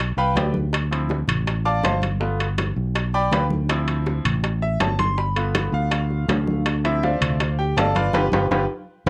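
Festive and joyful, this short salsa excerpt moves at a brisk 162 BPM in a straight 4/4, trading between G7 and Dm7 chords. A bright concert grand piano takes the solo up front, its brilliant tone and deep bass carrying a present, cassette-tape colour. Beneath it, a dark, round fingered electric bass sits forward in the mix alongside ringing metal-shell timbales with a vintage, band-limited edge. Congas with a thick, warm skin and low-tuned bongos with a compressed, saturated sound, both played with soft hands, stay in the background. The band lands a shared accent at 8.1 seconds, and the whole take has the light reverb and homespun character of a cassette recording.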